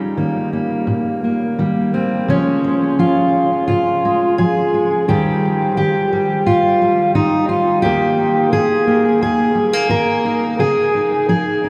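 A fingerpicked steel-string acoustic guitar, full-bodied and up front with analog delay, plays alone through this peaceful, hopeful folk excerpt at 86 BPM in a straight 4/4, moving from Eb through Db, Eb6 and Absus2/Eb to Dbadd9 within a dreamy mix soaked in a huge ambient reverb that lingers for 8.6 seconds.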